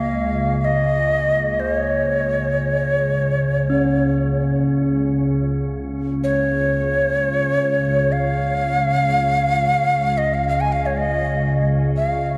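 Unmeasured and floating in free time, this short passage, cut from a longer piece, is peaceful world meditation music in Db major pentatonic. A breathy cedar flute in the Native American style carries the melody up front, its soft-attacked, woody tone shaded with vibrato and trailed by a diffuse ambient delay. Beneath it, an organ-like drone holds the low register throughout, a calm, vintage sound built from detuned sine voices in unison that warble through an ensemble chorus and bloom slowly into long, sustained tones with their own reverb. A bronze singing bowl, struck with a wooden striker, adds a bright, metallic ring with slow beating in the middle register until it falls away at 5.2 seconds, leaving flute and drone together. The whole is bathed in a cathedral-like reverb with a long decay, giving a dark, spacious production.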